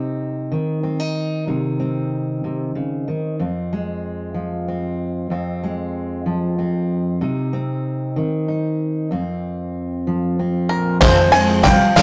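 Recorded roughly in a rehearsal room with tube saturation and moderate reverb, this wistful, yearning indie folk excerpt in 6/8 opens on a full-bodied fingerpicked steel-string acoustic guitar alone before a twangy, up-front bluegrass banjo melody and a floating, bowed cello line enter at 10.7 seconds, and at 11.0 seconds the arrangement builds with a shimmering, very quiet twelve-string guitar, a woody upright piano in the background, a mellow mandolin tracing arpeggios, a growly pizzicato upright bass, a soft brush drum kit with a punchy kick, and faint, crisp group handclaps.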